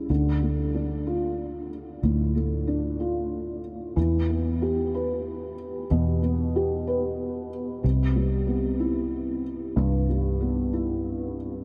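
Tender and romantic, this short pop excerpt drifts at 62 BPM in a straight 6/8 in C major, where a soft, boxy felt-muted upright piano with analog chorus and a round, foam-muted vintage electric bass play together throughout its 11.6 seconds, moving through Dm, Em and Cmaj7 in a dreamy mix soaked in a huge ambient reverb.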